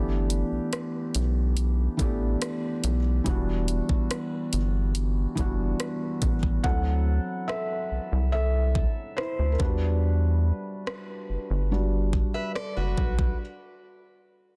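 Contemporary R&B in E minor at 71 BPM, moody and late-night, cut from a longer piece, where a soft, felt-muted upright piano with audible action noise drifts over G6 and Em7 chords while a rubbery, bouncy square-wave bass and a produced electronic drum kit of knocking kick, tape-warm hi-hat and rim click sit up front in a small room. From 6.6 s the mellow piano takes a solo over D9 and Em7, and at 12.3 s a boxy, fingerpicked plugged-in steel-string acoustic guitar slips in with arpeggios run through delay. The whole is pressed into a dense, heavily limited modern master.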